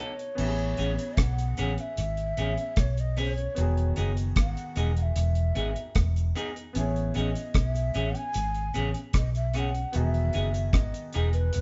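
A straight 4/4 lovers rock reggae groove at 75 BPM settles in as the dry, tight-kicked drum kit enters at 0.2 seconds, joined at 0.4 seconds by a dark, round, foam-muted fingered bass and a very quiet, saturated cabasa, with drums and bass sitting up front. Over an unhurried sway between Amaj9 and Emaj7, a clear baby grand piano plays accompaniment and a clean, picked semi-hollow electric guitar adds stabs, while a breathy, mellow shakuhachi carries the sweet, tender melody with a soft attack and straight tone. The band sounds as if playing live in one room with light reverb and a softened top end, and this clip is cut from a longer piece.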